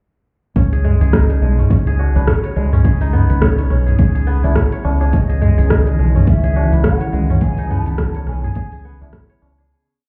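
A woody fretless electric bass sits up front with a round, dark, dotted-rhythm line under analog chorus, anchoring this meditative organic downtempo piece in C# minor at 105 BPM with a 16th-note swing. A bright, ringing kora repeats a fingerpicked 32-step arpeggio through delay, joined by an overdriven electronic kick, a deep house kit of metallic hats, rim and shaker, and low-tuned tabla in the background, while a breathy, mellow ney motif and a detuned, warbling sawtooth pad with sidechain pumping enter at 5.1 seconds. The whole piece sounds muffled as if through a wall in a club reverb, and it fades out from 6.7 seconds.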